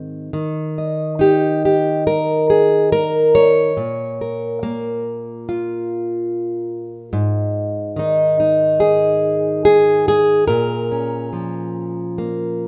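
The rhythm moves freely in a loose, rubato four-four, giving this short folk fragment a wistful, intimate feel. A single fingerpicked steel-string acoustic guitar, plugged in, carries the whole piece alone from start to finish across its 12.7 seconds, ranging from Ab2 up to Eb5. Its tone is warm with a concert-guitar character, and it sits up front in the mix. After an unaccompanied opening figure, the harmony settles on Bbm at 3.8 seconds, shifts to an Ab5 chord, and returns to Bbm near the close. A light reverb surrounds the guitar, and the passage sounds as though it has been lifted from a longer piece.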